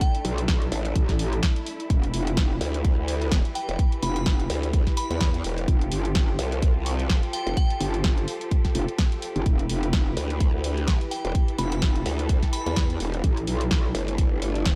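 A gritty, bouncy bass house excerpt at 127 BPM in E phrygian opens with a punchy kick, punchy snare and bright hats, a lush bowed string section pumping in the background, a warbling lo-fi pad, and glassy, crystalline bell phrases that return at 3.6 and 11.1 seconds through chorus, phaser and digital delay. Moments later a metallic FM wobble bass with tube saturation and a growling, formant-filtered bass join up front, both sidechain-pumped, over swung sixteenths and chords moving from Asus4 to Em and Fadd9. The mix stays largely dry, with a small room ambience around the drums.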